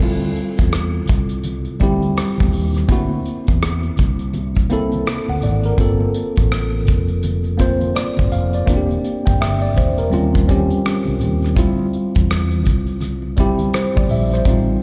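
Heard through a club PA with small-room reverb, this live excerpt of smooth, introspective R&B and neo-soul sits at 83 BPM in D minor with a swung sixteenth-note feel. Up front, a worn, slightly out-of-tune tine electric piano, lightly overdriven with slapback echo, moves through Dm9, Gm9 and Eb9 colours over a bright, amped fretless electric bass. An acoustic drum kit played with bundle sticks adds hi-hat, rim click and a punchy kick, while low-tuned congas struck with soft hands murmur very quietly beneath.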